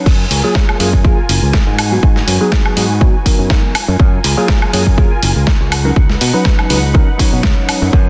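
A punchy, layered electronic kick sits up front at 122 BPM in 4/4, with a 16th-note swing that gives this feel-good, funky filtered disco house excerpt in F# major its bounce. A gritty, compressed sampler-style kit adds a medium-tuned snare, hi-hat, crash cymbal and woodblock, with its hats, cymbals and percussion pumping against the kick and a large-room character, while a tambourine sits barely audible beneath. A growly, tube-saturated fingered electric bass moves between F#1 and B2, alongside a bell-like tine electric piano coloured with phaser and a lush, bowed string section holding smooth sustained chords with vibrato. Electric piano, strings and bass all pump with the kick and pass through a low-pass filter, and a filter sweep runs across the full 8.1 seconds. The harmony cycles through F#maj9, G#m7, back to F#maj9 and on to C#9sus4 at 5.7 seconds, all under light reverb and a dense, heavily limited modern master.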